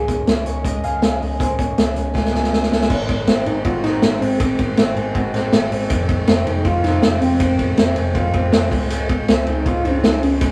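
This bright, youthful slice of jangly indie pop opens on a Dbsus2 chord. A velvety synth lead carries the melody over twangy, slightly broken-up guitar arpeggios from a small old amp and a round, foam-muted picked bass. A vintage drum kit joins at 0.1 s and sits up front, with a punchy kick, medium-tuned snare, hi-hat, ride and dark cymbals, its sound gritty and saturated with a rolled-off top. At 160 BPM in a straight 4/4, a drum fill from 2.1 s leads into the second section at 2.9 s, where the harmony moves through Ab7, Fm7 and Dbmaj7. The synth lead blends detuned sawtooth and triangle tones, with a fast attack, sustained notes, vibrato and chorus. The piece is a rough rehearsal-room recording with tube saturation and light reverb, and this clip is cut from a longer piece.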